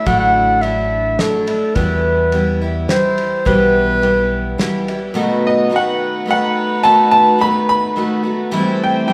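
Acoustic folk in a hopeful, pastoral 3/4 at 106 BPM, cut from a longer piece, opens with a close-miked clarinet solo over shimmering, octave-doubled twelve-string guitar, round fingered electric bass and a cloth-damped, thuddy drum kit, then from 5.2 seconds distant, floating bowed strings hold soft chords, and at 5.5 seconds a bright, woody, slightly detuned upright piano takes the melody up front, all set in the wet reverb of a recital hall.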